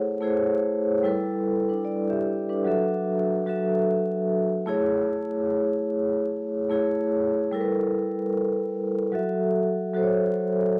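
A solo vibraphone, struck with medium mallets and placed up front, carries this cosy, mellow hip hop fragment cut from a longer piece, its metallic, ringing tone shimmering with a slow motor vibrato across a range from F#3 to F#5. Swung sixteenths give the 4/4 groove a relaxed lilt as the harmony cycles through Amaj7, G69 and F#m7 twice over 10.8 seconds. The vibraphone is softened by cassette tape character and a low-pass filter, while a wet studio reverb and vinyl crackle lend the home cassette recording a lo-fi haze.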